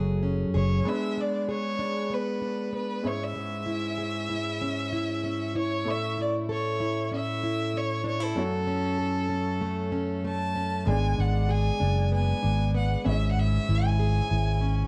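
A dry, close recording with a small-room reverb and a 1970s studio character frames this wistful, reflective pop excerpt at 96 BPM in a straight 4/4, moving through chords from F#madd9 and G#dim to C#m/G#, A and F#m. Up front, a bowed solo violin carries a focused, vibrato-laden melody that sounds distant, over a picked plugged-in steel-string acoustic guitar with a parlour tone, while a woody, slightly detuned upright piano with long sustain sits in the background. A round, dark fingered electric bass sounds only briefly at the start and returns at 10.9 seconds.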